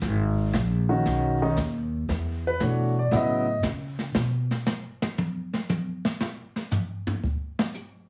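An intimate grand piano with audible action noise and long sustain carries the melody from 0.9 seconds over G#m9, E5 and Aadd9 chords in this relaxed, playful swung jazz piano trio fragment at 116 BPM, backed by a woody, thumpy pizzicato upright bass on gut strings and a dark, smooth brushed drum kit with a boomy kick, before the drums take a solo at 4.1 seconds and the bass drops out at 4.5, all set in light reverb and studio ambience with a heavily compressed, radio-like sound.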